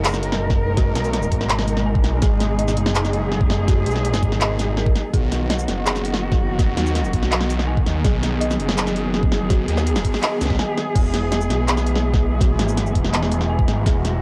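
Recorded at home on cassette in a small, boothy room, this heavy, cinematic half-time drum and bass excerpt in G# minor at 165 BPM puts a lush bowed cello section up front, holding dark, vibrato-rich sustained chords that pump against the sidechain over a thick, swirling phased saw bass. Further back, an eerie FM synth bell plays mellow arpeggios through chorus and tape echo, while a knocking electronic kick enters at 0.5 seconds alongside a kit of cracking snare, bright hi-hats, handclaps, shaker and crash cymbal. The chords move from G#madd9 to B and then E, and a very quiet noise sweep appears at 9.9 seconds just before a short break at 10.6 seconds.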